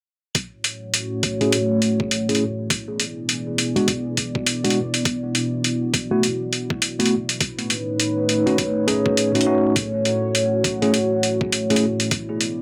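Gritty and swaggering, this glitch hop fragment rides a swung 4/4 groove of sampler-style, pitched-down drums: an up-front hi-hat and a thumpy, high-passed kick, both compressed and tape-warmed. A deep, moody analog pad of sawtooth and triangle tones with a sub octave holds sustained chords from 0.8 seconds, coloured by chorus, phaser, 12-bit sampler grit and sidechain pumping. A mellow, clean tine electric piano plays stabs through a low-pass filter, tape echo and a filter sweep, as the chords move from F#m7 through E7, D69 and B9 in a moderate studio reverb.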